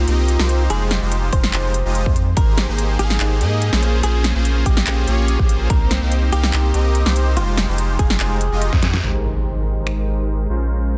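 A dense, heavily limited and nearly dry mix carries this euphoric, bright future bass excerpt at 144 BPM in half-time Ab major, where a thick, saturated sub bass sits up front under a smooth, detuned supersaw riff with phaser and low-pass filter and a clean, compressed electric guitar melody with dub echo, all three pumping to the sidechain, while a punchy, tape-warm electronic kick plays from 1.3 to 8.8 seconds, a dubstep kit of finger snaps, handclaps, crisp hats and deep snare rings in studio reverb, and a drum fill leads into a background impact at 9.0 seconds as the chords arrive on Abmaj9.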